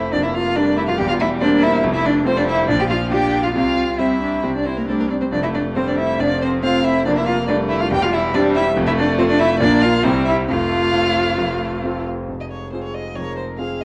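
A quick, spirited classical-period movement for piano quartet in F major at 139 BPM, where a focused, distant violin carries the melody with vibrato over a dark, woody cello second line, a clear, up-front concert grand with deep bass, and a smooth viola sitting in the background, all touched by light reverb and the worn, warbling pitch drift of old cassette tape, with the harmony turning to F minor at 12.3 seconds in this cut from a longer piece.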